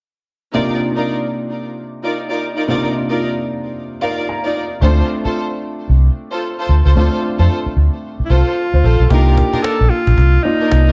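A round, punchy muted electric bass sits up front from 4.8 seconds in this confident, bouncy new jack swing excerpt, under a dark, mellow concert grand piano with tube saturation, chorus and audible action noise, which plays accompaniment and a brief fill. Lush bowed string stabs with vibrato, portamento and delay sound alongside the piano from the start. A breathy alto saxophone with light vibrato takes the melody at 8.3 seconds, and a woody, close cajon enters in the background at 9.1 seconds as the Cm11 harmony returns, all within light reverb and studio ambience on a swung R&B groove.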